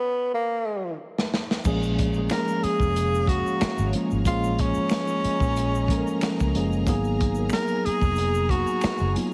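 A breathy, whispered tenor saxophone with light vibrato and slapback echo carries the melody over an introspective neo-soul R&B groove. A gritty, saturated breakbeat kit enters with a drum fill at about 1.2 seconds, and around 1.7 seconds a mellow tine electric piano, a round, foam-muted electric bass, a distant lush string section and a soft egg shaker with finger snaps join in, all inside a heavily compressed, radio-like small-room sound.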